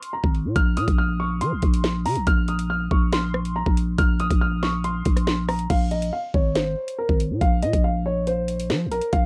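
A dark, worn grand piano carries the melody up front, its mellow tone muffled by a low-pass filter and treated with cassette tape grit and analog delay, with its action noise audible in the intimate, dry sound. This cold, tense drill cut in Bb minor moves at 140 BPM in a half-time feel, driven by an electronic kit with a knocking kick, sharp snare, metallic hats, rim clicks and crash, also colored by cassette tape. A growling, buzzy 808-style bass with a fast attack and decaying tail enters at 0.2 seconds, and the harmony shifts from Bbsus2 to Bb5 as a new section begins at 5.7 seconds.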